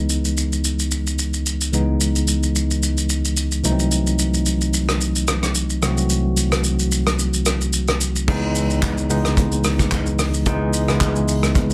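A bell-like, barky tine electric piano opens this late-night, hypnotic amapiano excerpt with bright, clean chords moving from C#m9 to Cdim7 and back, joined almost at once by a distant, roomy brushed drum kit with rolled-off highs, a tight, softly clipped kick, handclaps, hi-hat, shaker, rim click and crash over a swung 16th-note feel, the kick dropping out between 6.1 and 8.3 seconds, all set in a modest small-room reverb and a dense, heavily limited modern master.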